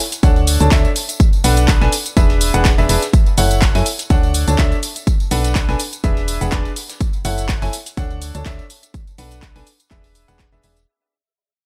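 A bright, woody upright piano with audible action noise and a slightly detuned edge carries a soulful riff through Dmaj7, Bm7, E7 and F#m7 over a punchy, overdriven kick, an overdriven house kit of handclaps, hi-hat and shaker, a gritty, very quiet sampler-style kit with a fat snare, a background tambourine and a round, dark FM bass, the piano and bass pumping with sidechain and the piano trailing delay in this energetic 124 BPM piano house drop, which fades out from 3.1 seconds.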